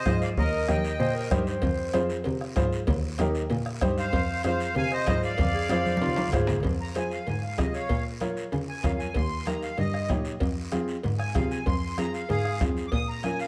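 A reedy, sweet accordion opens this fiery, passionate cumbia fragment up front, joined at once by a dark, woody upright piano, a soft-attacked bowed cello playing the bass line, a bombo struck with a soft beater, bright background congas and a raspy guiro, with ringing, saturated cowbell and timbales arriving at 1.6 seconds. A mellow, growling clarinet adds brief jazz-style second lines with light vibrato and scooped notes. After a drum fill, the accordion takes an airy solo from 6.6 seconds as the harmony darkens into minor, all set in light reverb.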